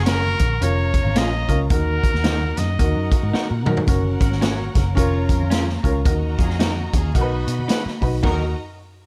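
A light reverb gives this short cut from a longer recording an airy room, with the drums sounding distant yet up front and the boomy kick and rolled-off top lending them body. It is driving, passionate uptempo 1960s-style soul at 110 BPM in 4/4, swinging its eighths in Eb minor, moving through Gb, Bbm/F and Ebm before reaching B and settling back on Ebm. A bright, present trumpet carries the vibrato-laden melody until 3.3 s, when the swinging big-band kit takes a short fill. The picked electric bass sounds dark, round and foam-muted, while a worn, woody, slightly detuned upright piano supplies the accompaniment and a slightly broken-up, lo-fi electric guitar plays stabs in the background. A lush, bowed violin section sits back in the mix with a second line, and very quiet, low-tuned congas ring close and dry. From 4.2 s a tight horn section with a soft attack and light vibrato adds its own second line.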